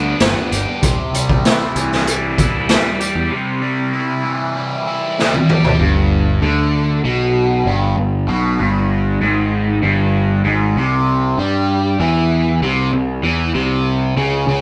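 This psychedelic rock excerpt moves at 97 BPM in a straight 4/4 in G major, tuned a touch below standard pitch, with a hypnotic, mysterious mood. A bright, overdriven electric guitar, picked and double-tracked and colored by phaser, plays the riff up front. Beneath it sits a dark, round fuzz bass, picked and overdriven. An acoustic drum kit of hi-hat, kick, snare and toms enters at 0.2 s with a gritty, saturated sound, a punchy kick, a medium-tuned snare and a rolled-off top, then plays a fill at 5.2 s. From 5.8 s the guitar and bass carry on alone over the G and C harmony, reaching a C5 power chord before the cut at 14.6 s. The band sounds as if it is playing live together in a stone room with moderate reverb.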